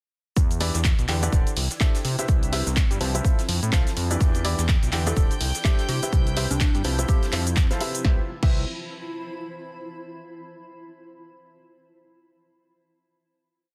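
A clear, worn grand piano with 12-bit sampler grit, digital delay and sidechain pumping plays a rhythmic chord riff through this euphoric, joyful piano house piece in C major at 125 BPM, driven by a punchy four-on-the-floor electronic kick, a fat, detuned sawtooth bass playing a funky syncopated line, an analog drum machine's claps, snare, hats, shaker and crash, and a very quiet looped brush kit, while a cloudy granular pad drifts in the background, reedy chamber strings hold a high note from 4.2 s, a round FM synth lead with chorus adds short answering phrases from 5.1 s, and the drop gives way to a final Cmaj7 chord at 8.0 s.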